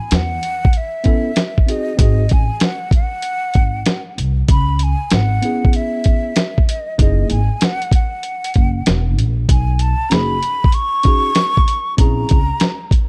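This jazz-hop cut, taken from a longer hip hop piece, has a smoky, cool mood and a swung groove. A dusty, sampler-style drum kit sits up front, compressed and gritty with overdrive, its thumpy kick, medium-tuned snare and hi-hat carrying the beat from 0.1 seconds. An upright bass, played pizzicato with a woody, steel-strung tone, also sits up front and holds the low end. A breathy concert flute carries the melody from the very start, its tongued notes and expressive vibrato given lifted highs. Beneath it, a worn tine electric piano enters at 1.0 seconds, slightly out of tune and lightly overdriven as if through its built-in speakers, moving through jazzy changes such as A69, C#m7 and F#13 before arriving on A#m7b5. The dark, warm production and studio ambience wrap the parts in a late-night haze.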